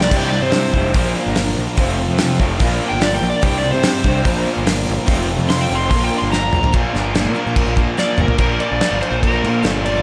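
Swaggering classic rock at 145 BPM in a straight 4/4, this confident fragment of a longer piece rides a C, Bb, F, Bb progression as an overdriven slide guitar with slapback echo solos until 6.7 seconds over two background riffing guitars, one distorted with its own slapback echo and one sludgy and overdriven. A fuzzy, overdriven picked bass and an up-front, cloth-damped drum kit with a fat snare, tight kick and dark cymbals drive the groove, with drum fills at 6.3 and 8.0 seconds. A boxy acoustic archtop guitar with finger squeak and a vintage, chorused organ-string pad sit very quietly beneath, all placed in a moderate recital-hall reverb for a big arena sound.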